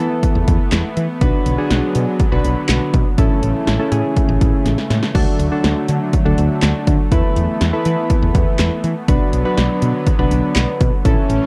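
This dark, lightly reverberant synth-pop excerpt moves at 122 BPM in a straight 4/4 in B dorian, with a driving yet melancholic mood. A punchy analog drum machine sits up front from 0.2 s, its overdriven kick, snare, hi-hat, handclaps and crash cymbal carrying a short room on the snare, clap and hats, with a drum fill at 4.7 s. Underneath, a woody fretless electric bass gives a growly, hollow-body tone in a direct sound. Soft electric-piano-like synth keys, also up front, blend triangle, sine and sawtooth tones with ring modulation, a filter sweep and chorus, each note striking fast and then decaying. A lush unison pad of thick, detuned sawtooth voices holds bright sustained chords with a slow attack, long release and chorus through Esus4, Bm, A and D, returning to Esus4 and Bm.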